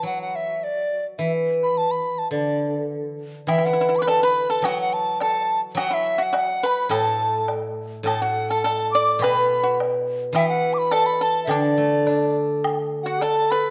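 A mellow large dizi with a buzzing membrane carries a festive, pastoral melody over a ringing, silvery steel-string zither in this free-flowing Chinese chamber piece, joined at 3.5 seconds by a dry, percussive pipa and a woodblock in the background, with an airy, distant xiao slipping in at 13.0 seconds, the ensemble set in a moderate recital-hall reverb.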